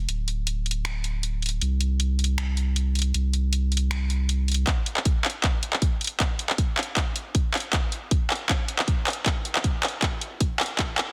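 A thick, saturated sub bass opens this bittersweet, dreamy future bass excerpt, its deep triangle tone sitting up front with a fast attack and sustained notes that pump against a sidechain. A moment later a layered pop drum kit joins with finger snaps, handclaps and warm hi-hats, and its snare carries a touch of soft clipping. The groove has a half-time feel with a gentle swing on the sixteenths. At 4.7 seconds the bass drops away and a punchy electronic kick drum steps forward, launching a build-up and drum fill that runs until the excerpt cuts off at 11.1 seconds. Light reverb and a digital ambience surround the parts, and the mix is dense and heavily limited in a modern style.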